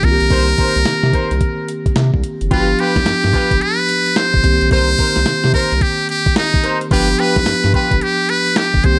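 A swung, bouncy new jack swing groove on a dusty, gritty sampler-style kit with a thumpy kick, medium-tuned snare, hi-hat and handclaps drives this slick R&B excerpt, where a round, deep analog bass and a clean tine electric piano hold down the Cm7 to G7 changes beneath an up-front, buzzy metal-muted trumpet lead with scooped notes, while a distant, roomy horn section adds tight jazz-style stabs from 0.3 s, all set in light reverb.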